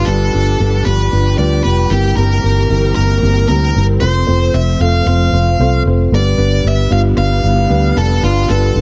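Piano-driven pop in G mixolydian at 114 BPM, this anthemic excerpt from a longer piece moves through G7, C7/G, F and G over a straight 4/4 feel, tuned slightly low to A4 = 436 Hz. A smooth overdriven lead guitar carries the picked melody over a felt-muted upright piano whose soft, mellow tone comes with audible action noise, while a lush bowed string section with vibrato holds sustained chords in the background. Up front, a foam-muted fingered electric bass sounds round and punchy, all set in a dark production with light reverb and small room ambience.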